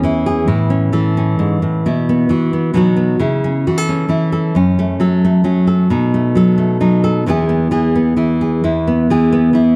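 Moving in a straight 3/4 at 133 BPM, this brief folk passage for solo fingerstyle guitar, cut from a longer piece, has a pastoral, nostalgic mood. A single nylon-string guitar plays throughout, fingerpicked with a full-bodied, deep classical tone and audible finger squeak, ranging from E2 up to A4 and sitting up front in the mix. In E major and tuned to A4 = 436 Hz, the harmony moves through A, Bsus4, B, C#m, F#m and B7 before settling on E. The opening section begins again at 8.6 s, and the passage ends at 9.8 s. A moderate concert hall reverb surrounds the guitar, and the production is dark and warm.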